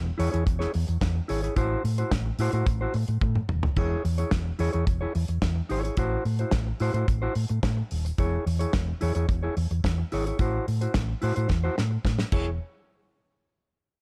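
A dark, warm production in a small room carries this danceable, celebratory disco passage, cut from a longer piece, where a round, punchy fingered electric bass and a dry, damped 70s drum kit with a tight kick and medium-tuned snare sit up front. A mellow, clean electric guitar plays fingered accompaniment over chords alternating between E6 and Am6, while the drums add fills at 3.2 and 11.5 seconds before the band stops at 12.6 seconds.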